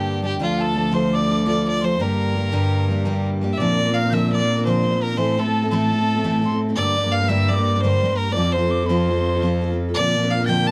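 From the opening moment, a clear fiddle with light vibrato leads a dark, lively and wild Celtic slip jig in G dorian at 113 BPM in 9/8, as a chiffy, unsteady wooden whistle plays a second line in the background, a full-bodied picked jumbo acoustic guitar accompanies, and a rich, soft-attacked sul tasto cello carries the bass through chords moving from Dm and Gm to Bbadd9, Am and F, all in a dry, close 1970s-style studio sound cut from a longer piece.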